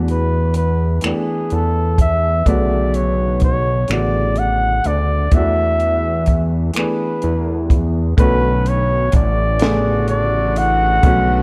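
This slow R&B piece in 6/8 moves at 42 BPM in B dorian, with a sultry, late-night mood and tuning at A4 = 438 Hz. A grand piano with audible action noise gives an intimate accompaniment, while a fat, detuned sawtooth analog bass sits up front with sustained notes and a filter sweep. A compact cocktail drum kit carries the pulse with finger snaps, hi-hat, a punchy kick and a high-tuned snare, its sound dark and smooth with a rolled-off top. The mellow flugelhorn takes the solo melody in jazz style, with light vibrato, scooped notes and a slapback echo. At 9.6 seconds a pop-style horn section enters in the background with ensemble stabs, also carrying slapback echo, as the harmony moves between E9sus4 and Bm9. The overall sound is dry, and the recording is cut from a longer piece.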